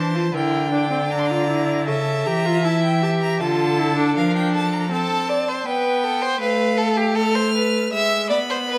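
A solemn, contemplative baroque-style string quartet fugue at 79 BPM opens with two violins, viola and cello bowing together in a moderate recital hall, where a clear, distant-sounding violin carries the high melody above an up-front second violin line, a smooth-topped viola accompaniment and a rich cello bass that drops out at 4.9 s, all played with vibrato as the harmony moves from Em7b5/D through Dm to E/G# in this short cut from a longer piece.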